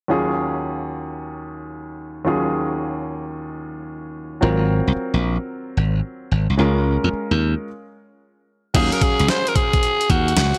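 Swung sixteenths at 111 BPM in 4/4 drive this punchy, bouncy new jack swing R&B excerpt in Eb dorian, where a clear, polished baby grand piano opens on Ebm11 chords, a glassy slap bass joins at 4.4 seconds, and after a stop at 7.7 seconds a thumpy, sampler-style 12-bit drum machine arrives at 8.7 seconds with a raspy, gritty alto saxophone solo, all set in a lush hall reverb with bright 1980s digital production.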